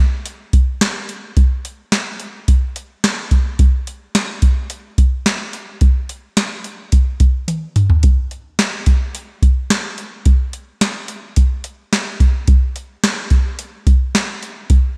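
Floating and ethereal in mood, this short dream pop passage, cut from a longer piece, moves at 108 BPM in a straight 4/4 feel. The only part is a soft vintage rhythm box, an electronic, analog drum machine that plays from 0.3 to 14.8 seconds with hi-hat, kick drum, snare drum and toms. Its deep kick, crisp snare and metallic hats sit up front in the mix. A drum fill arrives between 7.5 and 8.0 seconds, marking the midpoint of the single section. The room sound is dry, with little reverb, so the machine's tones come through close and clear.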